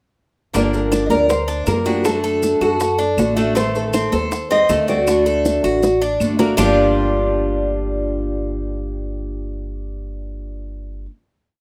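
A rough home demo mix with a wet studio reverb frames this complete, sultry Cuban son and guajira piece in G minor, moving at a brisk 159 BPM in straight 4/4. Up front, a bright, metallic Cuban tres with double strings plays an arpeggiated guajeo, while a boxy parlour steel-string acoustic guitar with old strings strums the accompaniment with muted slaps, and a thumpy pizzicato upright bass plays a tumbao that anticipates the chords. Over them, a fingerpicked nylon-string guitar with fresh strings carries a classical, motif-based melody of call phrases, its finger squeaks audible and its notes trailed by a slapback echo. In the background sit round, low-tuned bongos in steady eighths with a hand bell, distant high-tuned congas with slaps and open strokes, grainy maracas, and woody claves tapping a two-bar time line. A drum fill at 5.8 seconds closes the verse, the percussion drops away at 6.7 seconds, and the guitars, tres and bass ring out on a warm final Gm7 chord.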